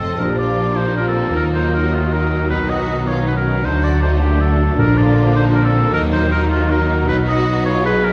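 A straight three-beat pulse drives this adventurous, soaring cinematic passage, cut from a longer piece. A lush symphonic violin section carries the melody with smooth, even vibrato, while a chamber violin section and a classical-style solo oboe add second lines, the chamber strings close and expressive in the background. A focused viola section supplies the accompaniment, and rich cello and double bass sections anchor the low end with smooth, bowed tone. From 0.2 seconds a mellow French horn section holds tight sustained chords as the harmony moves through Bb, Ebm, B and D before returning to Bb. Very quiet timpani struck with soft mallets adds a round note from 4.8 to 5.3 seconds, and a wet scoring-stage reverb places the orchestra further back in the room.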